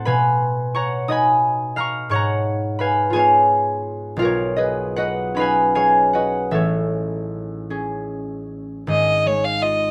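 Mysterious and wistful, this short rubato excerpt of an impressionist classical duo in 6/8 opens with a ringing, fingerpicked concert harp moving through Bmaj7, G#m6, Badd9 and Amaj7 in light reverb, before a rich, smooth-bowed violin with even vibrato enters up front at 8.9 seconds for the final stretch.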